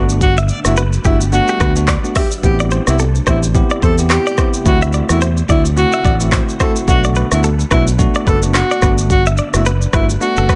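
Afrobeats at 108 BPM in 4/4, with a swung sixteenth-note feel and a sultry, mellow mood, this short passage is cut from a longer piece and moves through Gmaj7, Am7, D7, Bm7 and back to Gmaj7. A breathy, close-miked alto saxophone carries the melody with a soft attack and an intimate, whispered quality, trailed by tape echo. Beneath it, a bell-like tine electric piano plays clean accompaniment, while a bright, twangy clean electric guitar, recorded direct and compressed, picks a high riff dressed in spring reverb and tape echo. A punchy fingered electric bass sits up front alongside a deep house drum kit, entering at 0.1 seconds, of layered electronic kick, handclaps, hi-hat, rim click and shaker, the whole kit re-recorded in a small room around its deep kick. Far back in the mix, a very quiet granular cloud pad holds blurred, evolving, detuned chords with a slow attack and long release. 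The overall sound is dry and close, with a soft, rounded top end.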